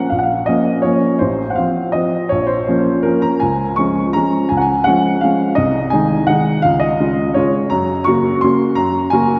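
A long, wet church reverb wraps this dark, warm recording, and the upright piano sits up front within it. The piece is a classical waltz in three, played solo with a rubato feel that gives it a bittersweet, wistful mood. The piano sounds clear, woody and slightly detuned, with an open tone that spans from A1 up to Db6. Over about 9.4 seconds, the harmony moves from Bbm through F/A and back to Bbm, then turns toward Db, Ab/C and Db again before settling on Gb. Cut from a longer piece, this fragment lingers in the reverberant space like a half-remembered dance.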